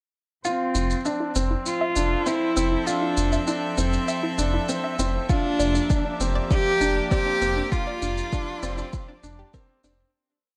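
Lightly reverberant studio ambience frames this luminous, tender piano-and-strings electronica piece at 99 BPM in F major, where an up-front, focused solo cello sings a vibrato-rich motif under a filter sweep over a felt-muted upright piano ostinato with audible action noise, gut-toned chamber strings holding slowly shifting chords, a bright sidechain-pumped pluck arpeggio drifting in a 5-step loop through digital delay, a restrained shaker and a dark, detuned, tube-saturated saw bass on the off-beats, building until an overdriven four-on-the-floor kick arrives at 5.3 seconds shortly before the fade-out begins at 6.9 seconds.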